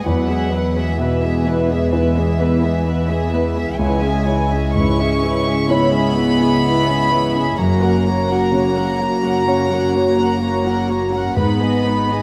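A moderate scoring-stage reverb surrounds this short, bittersweet cinematic cue, giving the orchestra a spacious yet intimate sound. Over the full 12.2 seconds, a close, floating violin section carries the sorrowful melody high in its range, while a second violin line moves beneath it with the same pure, soft-attacked sul tasto tone. A dark, woody viola section adds lush accompaniment with vibrato in the background, and a grand piano with a short sustain supports the harmony. A distant, roomy French horn section holds sombre sustained chords, while a rich cello section and a double bass section, the latter entering at 0.1 seconds, anchor the bass with gentle bowing. The rubato phrasing drifts through E, C#m, F# and G#m, leaving the emotional film-score passage unresolved as it breaks off.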